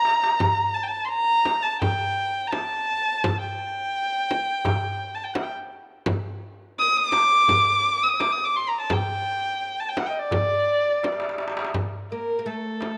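A single bowed violin leads this melancholic, soulful Arabic maqam piece in D maqam hijaz, its dark, woody tone played sul tasto with vibrato, sitting up front yet sounding distant. The tempo is a steady 85 BPM in a straight 4/4, cut from a longer performance. A metal-shelled darbuka, crisp and large, echoes as though from a big room, while a close, dry frame drum struck with hard hands adds a warm pulse beneath. A drum fill opens the passage, and another from 11.0 to 11.8 seconds leads into a new section. At 12.1 seconds a fretless oud enters as a second line, plectrum-plucked on double strings with a deep, acoustic voice. The ensemble is bathed in a moderate plate reverb that lends the melody a mournful glow.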